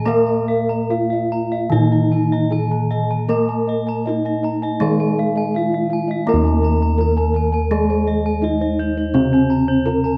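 This Javanese gamelan excerpt is ceremonial and serene, moving at 71-84 BPM in a straight 4/4 within an Eb pelog barang tuning. A bronze metallophone carries the melody in a mellow, soft voice struck with padded disc mallets, its paired tuning producing shimmering beats. Beneath it, a second metallophone plays accompaniment with a horn mallet, sounding bright, close and dry. A third metallophone and a set of bossed gongs share the arpeggios in the upper register, the gongs round and boxy as if in a small room. The bass is also carried by bossed gongs, dark and smooth in the background. All five parts play throughout the roughly ten seconds, with the music shifting to a new section at 6.3 s, and the whole sits in a moderate recital-hall reverb with a dark production.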